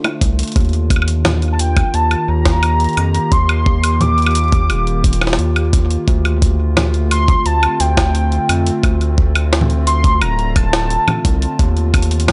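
A dry, gritty hardware recording with transformer saturation and a dulled top end frames this intricate, cerebral IDM fragment at 87 BPM in D phrygian, its chords shifting between Dm7 and Ebmaj9. A velvety sawtooth-and-triangle synth lead carries the melody with chorus, vibrato and tape echo over a warbling, nostalgic lo-fi pad of detuned, ring-modulated tones, while a round, deep analog bass sits up front from 0.2 s. Pitched-up, compressed sampler drums set the pulse: a thumpy electronic kick beside a jungle-style kit of congas, hi-hat, high-tuned snare and woodblock, both drum parts carrying a small room ambience.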